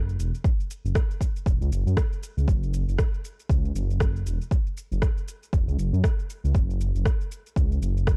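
A dark, detuned saw bass sits up front in this short afro house fragment from the first moment, a deep, rumbling tone with a beating, sawtooth edge over a sine core, a fast attack and long sustain. Tube saturation thickens it, and sidechain pumping makes it breathe against the beat. An electronic shaker and rim click arrive at 0.1 seconds, layered and overdriven but sitting low in the mix. From 0.4 seconds a deep, overdriven electronic kick drum joins up front, giving the groove a heavy pulse in four with a swung sixteenth-note feel. The mood is hypnotic and earthy, and the whole 8.2-second clip stays in one unchanging section. The sound is dry and gritty, with transformer saturation, cassette tape character and a digital ambience around it.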